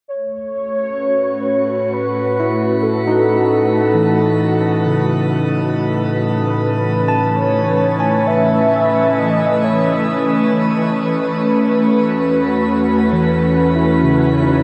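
This warm, weightless ambient fragment in 3/4 at 66 BPM, cut from a longer piece, opens at 0.1 s with a morphing, detuned wavetable pad holding sustained chords up front beside a velvety, chorused synth lead that carries the melody with vibrato and delay. An ominous, rumbling drone enters below at 1.4 s and fades throughout, and a bright, barky tine electric piano adds delayed arpeggios from 2.4 s. A wet shimmer reverb bathes the mix as the harmony moves from Amaj7 to E.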